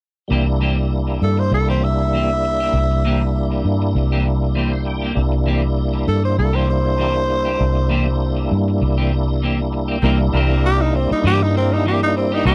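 This soulful, rollicking blues opens at 0.3 seconds on a C7 chord, with a full, lightly overdriven tonewheel organ carrying the accompaniment through chorus vibrato and a slow rotary speaker. Beside it, a dark, clean electric guitar picks short stabs touched with subtle chorus and tape echo. Underneath, a vintage foam-muted fingered bass sits round and punchy up front. A raspy, growling tenor saxophone takes the melody from 1.2 seconds, clear-toned with light vibrato and a jazz-style edge, while the organ slips in a brief fill along the way. At 10.0 seconds the sax moves into a solo as a distant, roomy horn section enters in the background with sustained chords, all captured in a dry, close 1970s-style studio sound in this excerpt from a longer piece.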